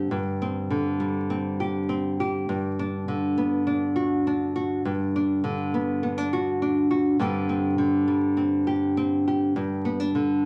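Hopeful and warm, this short folk excerpt features a solo nylon-string guitar, fingerpicked and up front with a woody, small tone from old strings, moving between Csus2/G, Gmaj7 and G chords over a straight 4/4 feel, tuned to A4 = 436 Hz and set in a small room with light reverb and vinyl crackle.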